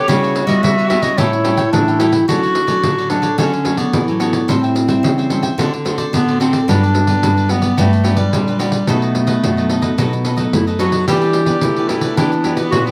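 Close, detailed microphones and a light reverb give this playful, sunny cut from a longer samba and choro piece an intimate, present sound. At 109 BPM in a straight 4/4 in D major, a classical-style clarinet sits up front carrying the melody with a warm tone. A breathy tenor saxophone adds a jazz-style second line with vibrato, subtone and scooped notes, heard in the opening bars until 2.2 seconds and again from 11.1 seconds. Underneath, a crisp, picked cavaquinho and a bright, fingerpicked nylon-string guitar, complete with finger squeak, supply the accompaniment. A second nylon-string guitar, dark and full-bodied, holds down the bass in the background, while a jingly, vintage-sounding pandeiro played with soft hands keeps the percussion going. The harmony moves from C#m7b5 and A7 into a Dmaj7, then travels through Am7, D7 and Gmaj7 before settling on B7 and Em7.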